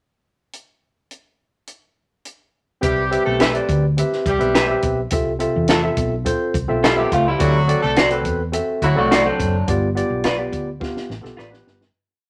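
This joyful, uplifting 1960s-style soul piece opens with a compact cocktail drum kit playing a short pickup alone: a dry, natural sound with a high-tuned snare and a punchy kick. At 2.8 seconds the verse begins as a bright, barky tine electric piano, a dark hollow-body bass and a horn section join. The electric piano sits up front with rhythmic drop-2 chords, and the round, fingered bass plays a melodic, syncopated soul line with slides and chromatic approach notes. A slightly broken-up, lo-fi electric guitar through a small old amp adds short chops on the backbeat, and the horns play short ensemble riffs with a smooth top and light vibrato. Midway through, a second compressed, picked guitar steps forward with short fills in sixths between phrases. The piece fades out from 9.7 seconds, with a drum fill at 10.8 seconds, all in a moderate studio reverb.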